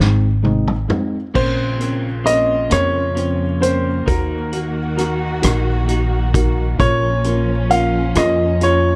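A dark, warm studio sound with light reverb carries this swaying, heartfelt six-eight pop ballad at 44 BPM, cut from a longer piece, where a loose indie drum kit with a punchy kick opens with a fill over an Ab chord alongside a mellow felt-muted upright piano and woody pizzicato upright bass; then, from about 1.4 seconds, a clear grand piano takes the up-front melody over Bbmadd9, Ebm and Bbm, while bright, twangy twelve-string electric guitar arpeggios and lush, bowed symphonic strings with vibrato and portamento sit in the background.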